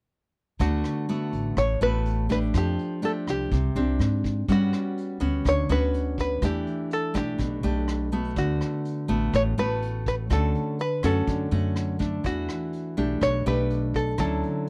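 Romantic and relaxed, this bossa nova in D major moves at 124 BPM in 4/4, with a twangy, plunky fingerpicked open-back banjo carrying the melody over an up-front, full-bodied nylon-string guitar with audible finger squeak, a woody pizzicato upright bass on steel strings, and a vintage brush kit with punchy kick, hi-hat, rim click and a rolled-off top in a small pumping room, set in light reverb as the chords drift from D6 through Gmaj7#11 and Em11 to a closing Dmaj9 at 14.2 seconds.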